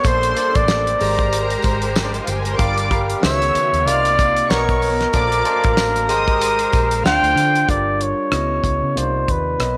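Lush 1970s-style soul at 94 BPM with a smooth, cinematic mood, cut from a longer piece, where a breathy, whispered trumpet carries the melody up front with scooped notes and vibrato over a barky, lightly overdriven tine electric piano with phaser, a round, foam-muted electric bass, a damped, dry drum kit with a fat snare and tight kick, a jingly tambourine that drops out at 7.5 seconds, and two bowed string sections, one distant and warm on a second line and one clear and close on sustained background chords, both ending by 7.7 seconds as the harmony cycles through rich chords from Bbmaj9 to Cm11 in a light studio reverb.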